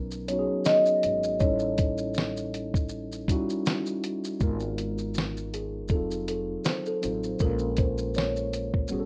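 Nostalgic and reflective, this lo-fi hip hop excerpt from a longer piece sets a ringing, airy kalimba melody, filtered and plucked with the thumb, over a mellow, clean tine electric piano that sits up front through its built-in speakers, also softened by a low-pass filter. Underneath, a woody, growly pizzicato upright bass with steel strings joins a muffled, pitched-down sampler-style drum kit that enters at 0.1 seconds, its thumpy kick and fat snare up front among compressed hi-hat and shaker on a lightly swung groove. The rough home demo mix carries moderate studio reverb as lush jazzy chords such as Bmaj9, G#m69 and F7b9 drift by.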